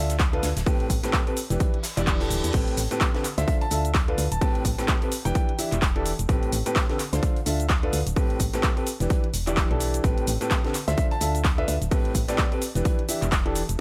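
Piano house with a bittersweet, soulful mood, cut from a longer piece, built on a woody upright piano riff with tape echo and sidechain pumping, anchored by a round, mellow FM bass that also pumps, over a Dm–Am9–Em7 cycle. A punchy, overdriven electronic kick sits up front, joined by an overdriven house kit of cabasa, crash, handclaps and hi-hat re-recorded in a large room, plus a very quiet acoustic arena kit with a fat snare. A reverse cymbal sounds in the background from 1.8 to 2.5 seconds, and a deep concert grand piano adds brief melody lines with 12-bit sampler grit and tape echo from 3.4 and 10.9 seconds, all within a small room ambience.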